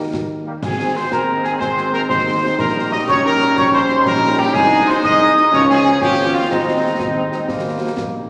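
A full wind band strikes up together at the opening of this rousing, festive military-style march, cut from a longer piece, with the percussion joining at 0.1 seconds. Moving at 122 beats per minute in a straight 6/8 in Ab major, the tune is carried by a mellow trumpet section with light vibrato that sits up front, though it sounds somewhat distant and roomy. A large flute ensemble adds a pure, straight-toned second line above it, while a warm solo euphonium traces its own second line in the middle register. Beneath them, a bright trombone section holds sustained chords in the background, a very quiet French horn section fills in the accompaniment with a smooth top, and a mellow tuba anchors the bass. The concert snare drum, bass drum and clash cymbals are close and dry, with dark-sounding cymbals, while the band as a whole is bathed in a wet scoring-stage reverb. The harmony moves from Eb to Ab, passes through Db, and comes back to Eb before the passage breaks off at about 8.3 seconds.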